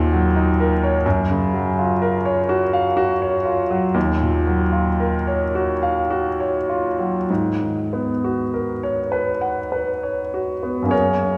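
Drifting in a rubato 6/8 at roughly 32-43 BPM counted in dotted quarters, this hazy, dreamy impressionist classical fragment, cut from a longer piece and tuned to A4 = 444 Hz, presents a solo grand piano, clear and intimate with audible action noise and long sustain, placed up front across D#2 to F#5 as its harmony moves from D#m7 through F#maj7 and D#m9 to G#m11 at 7.3 seconds, bathed in the wet 2.0-second reverb of a church or concert hall.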